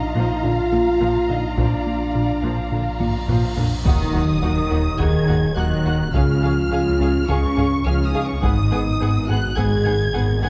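Dark French horn chords hold beneath a rich, distant violin melody and a second violin line with portamento in this vast, futuristic hybrid orchestral and electronic film cue, cut from a longer piece, where lush violas, close cellos and very quiet double basses sit in the background alongside a tine-like FM synth pluck playing arpeggios with chorus and tape echo, a round analog bass riff and a thick, saturated sub bass, while very quiet, dry taiko drums enter at 1.6 s, a huge, bright cymbal swell leads into an impact at 3.9 s, and the whole recording carries a worn, warbling cassette-tape pitch drift inside a moderate concert-hall reverb.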